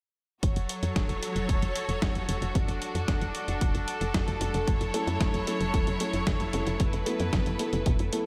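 Nostalgic and bittersweet, this italo disco excerpt rides a punchy, layered electronic kick and a gritty, tape-warm sampler-style kit of hi-hat and snare, while a tight sawtooth sequencer bass with tube saturation drives underneath through a filter sweep. A clear, up-front symphonic string section holds sustained chords with light vibrato over a steady F#m, D/F# and A/F# progression. At 4.9 seconds a dark, boxy baby grand piano adds mellow stabs with tape echo, and the whole dreamy mix is soaked in cathedral reverb.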